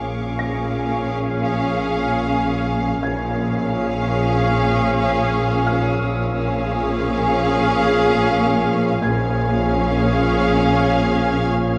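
An ominous, mysterious suspense cue in Bb minor at 80 BPM opens on a single Bbm7 chord, with lush, bowed string sections all sounding together from the start: a distant violin melody reaching F5, a close, even second violin line, a smooth viola accompaniment, a cello part with a focused, smooth top, and a clear double bass anchoring the low Bb. A glassy, ethereal glass harmonica holds slow-attack sustained chords above, while a faint high violin texture and a very quiet, felt-muted upright piano add mellow, intimate glints in the upper register. The whole short excerpt sits in a moderate scoring-stage reverb and carries the worn, warbling pitch drift of old cassette tape with a faint mains hum beneath it.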